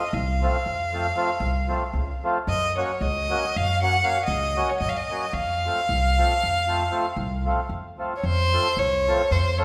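A bowed violin with light vibrato and a soft, intimate sul tasto tone carries the melody up front from the start, over a reedy, full accordion accompaniment in this fiery yet bittersweet Balkan wedding-band piece in 11/8, cut from a longer performance. A woody, thumpy pizzicato upright bass with gut strings joins almost at once, also up front, as the harmony moves from F to Gb at 2.5 seconds and back to F at 5.4 seconds. The trio sits in the wet reverb of a recital hall or church, with a fresh section arriving at 8.2 seconds.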